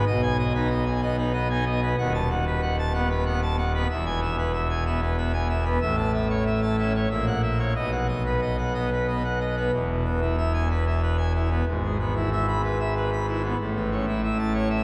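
A long, wet church reverb hangs around this recording, placing the listener further back in a resonant room where each chord lingers for seconds. It is a short cut from a longer classical organ toccata in triple metre, with a brilliant, jubilant mood throughout. A pipe organ plays alone on full organ, sitting up front in the mix, its mixtures lending a bright, majestic edge to a romantic voicing that spans from deep pedal notes to high treble. The harmony opens on G#m/B and moves through B7/D# to a firm arrival on E at 3.9 seconds, then passes through A, F#7/A# and B. A new section begins at 9.7 seconds, returning to E and stepping through E/G# before settling on A as the passage breaks off.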